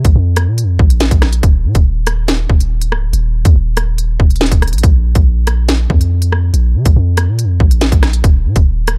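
An electronic, tape-warm drill drum kit, with its hard-clipped kick, sharp snare, crisp hi-hats and rim clicks sitting up front, drives this tense, menacing half-time hip hop cut at 141 BPM in Bb harmonic minor, as a deep, sine-toned 808-style bass with a fast attack and long, mellow decay holds the low end from Db1 to Db3 in a dry room across the full 9.0 seconds of this excerpt.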